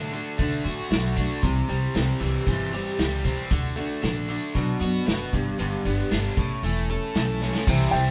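A picked, jumbo steel-string acoustic guitar with a bright, full-bodied ring and an overdriven, double-tracked electric guitar riff open this short folk rock and heartland rock excerpt together, with a woody, thumpy pizzicato upright bass beneath them. An unplugged drum kit comes in almost at once, played with bundle sticks and sitting up front, with a punchy kick, a medium-tuned snare, hi-hat, ride and crash cymbals in an airy, polished small-room sound. The straight 4/4 groove carries an open-road mood over chords that move from D to C and back to D, then through Bm, G and A. A drum fill at 7.4 seconds leads to a brief new layer at 7.7 seconds, where a reedy, breathing hand-pumped harmonium holds sustained chords and a grainy tube shaker sounds distantly in the background. A dark, mellow concert grand piano touches a single high melody note at 7.9 seconds, just before the cut, and the whole band plays live in one room with moderate studio reverb.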